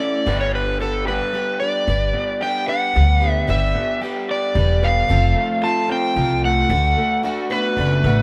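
In a straight 3/4 at 112 BPM, this nostalgic, hopeful rock excerpt puts an overdriven, dark slide guitar melody with analog delay up front over a shimmering, octave-doubled plugged-in twelve-string acoustic guitar with audible finger squeak, a slightly broken-up, lo-fi riff from an electric guitar through a small old amp, and a woody, growly pizzicato upright bass that enters at 0.3 s, as the band, playing live in one room with moderate studio reverb, moves through G, F and D6.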